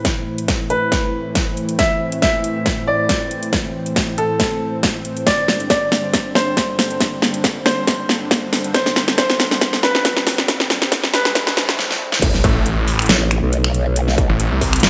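A lightly reverberant, high-pass-filtered mix carries this menacing, heavy wobble dubstep passage, cut from a longer piece, at 138 BPM in A minor with a half-time feel and a slight swing on the sixteenths. Through the build-up, a lush, warbling unison pad holds sustained chords from Am to Gsus4, thickened by chorus and sidechain pumping. Above it, a boxy grand piano with short sustain plays a clear melody through a low-pass filter and digital delay. The dubstep drum kit sits up front with a huge snare, metallic hi-hats, finger snaps and crash cymbal, alongside a layered, distorted electronic kick, while drum fills and a filter sweep drive toward the drop. A very quiet electronic riser and impact enters at 8.5 seconds, and at 12.2 seconds the drop lands on Am with a growl bass carrying a formant-filtered wobble, chorus and overdrive, soon followed by a snarling, bright, detuned saw bass with distortion and a moving notch, both pushed forward in the mix.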